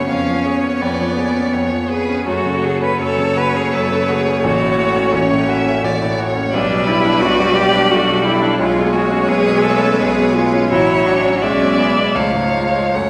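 A slow, romantic movement for piano quintet opens with all five players sounding together from the start, setting a yearning, melancholic mood in F# minor. The first violin carries the melody with a rich tone, soft attack, expressive vibrato and portamento, while the second violin adds a clear, even second line and the cello, heard close, shapes another line beneath. The viola fills in smooth accompaniment, and the concert grand piano sits up front with a bright, brilliant sound and deep bass. The tempo moves freely between 73 and 89 BPM in 3/4 with a rubato feel, the harmony passing from C#7/E# through F# minor and G/B before coming to rest on C# at 12.2 seconds. A generous hall reverb surrounds the ensemble in this passage cut from a longer piece.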